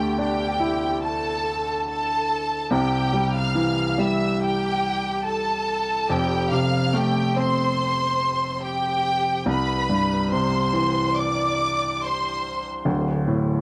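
A straight, unhurried 4/4 pulse carries this heartfelt, hopeful pop ballad fragment, where a lush, bowed violin section sings the melody with smooth vibrato over a clear, polished baby grand piano that moves through Dsus2, C and Fadd9 harmonies. Both parts sit up front and carry a cassette tape coloring, set in light reverb with the intimacy of a home recording. The strings stop at 12.7 seconds, leaving the piano alone to settle on a closing D5 until 13.6 seconds.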